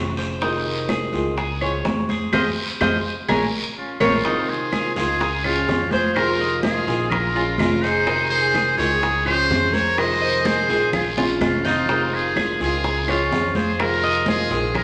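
Warm and sultry, this Cuban son and guajira groove moves in a straight four, cut from a longer piece and bathed in a large, wet studio reverb. A fingerpicked flamenco guitar, finger squeaks audible, and a picked Cuban tres with metallic double strings play from the start, the tres spinning arpeggios above the guitar's accompaniment while a dark, woody pizzicato upright bass anchors the low end. Percussion gathers within the first second: bright, thin-skinned congas played with soft hands, round low-tuned bongos, a raspy guiro and very quiet claves, the drums kept close and dry in the background. During a band accent, a muted trumpet enters up front at 3.8 seconds, its buzzy, brilliant jazz solo carrying a light vibrato and soft attack, joined by a rich, earthy violin section bowing a smooth second line behind it. The harmony circles through Fm7, Dbmaj7 and Bbm7, with a drum fill at 10.9 seconds adding a lift before the cycle returns.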